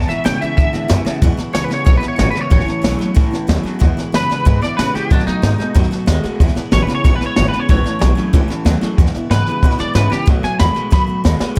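Rockabilly with a rowdy, rollicking spirit, this excerpt from a longer piece drives along at 186 BPM in a straight 4/4 in E major. A clean, twangy electric guitar carries the melody, shimmering with ensemble chorus and tape echo, while a second electric guitar through a small old amp plays a slightly broken-up riff low in its range, colored by a phaser. A bright, full-bodied dreadnought acoustic guitar, picked, fills in the accompaniment. Underneath, a pizzicato upright bass with gut strings gives a woody, thumpy bottom, and an up-front brush kit pairs a high-tuned snare with a boomy kick and hi-hat. The chords cycle through E, A and B7, with a brief opening section giving way to the main part at 1.2 seconds, and drum fills at 1.1 seconds and from 10.9 seconds to the close, all set in a small room ambience.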